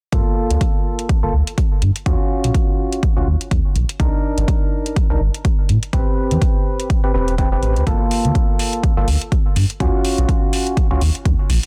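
Deep house with a moody, smooth feel and a swung groove, this short cut from a longer track is driven by a punchy, overdriven kick up front and metallic, overdriven hi-hats. A dark, gliding synth bass with sidechain pumping runs beneath a hollow, nasal organ stab treated with chorus, tape echo, pumping and a filter sweep, voicing minor-ninth chords such as Gm9, Ebm9 and Am9. The dry mix sits inside a dense, heavily limited master.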